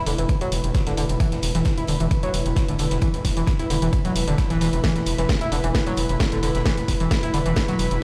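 This driving peak-time techno piece opens on a gritty synth bass and an airy, breathy pad together, both pumping under sidechain compression at 132 BPM in a straight 4/4. The bass sits up front, aggressive and saturated, with an evolving resonant filter sweep and oscillator sync, while the pad floats high with a detuned, mellow shimmer of chorus and a slow attack. An overdriven lead enters at 0.1 seconds with a screaming, guitar-like, wave-folded riff, roughened by tube saturation and vintage 12-bit sampler grit, thickened by subtle chorus and trailed by tape echo. A layered techno kit with a cracking snare and hi-hats joins at the same moment, shadowed by a very quiet, dark, low-tuned acoustic kit with a fat snare. A punchy, overdriven analog kick arrives at 0.3 seconds, and both the kick and the techno kit carry the size of a large room. The whole industrial, driving passage plays through a big sound system in a bare room with light studio reverb, as a cut from a longer piece.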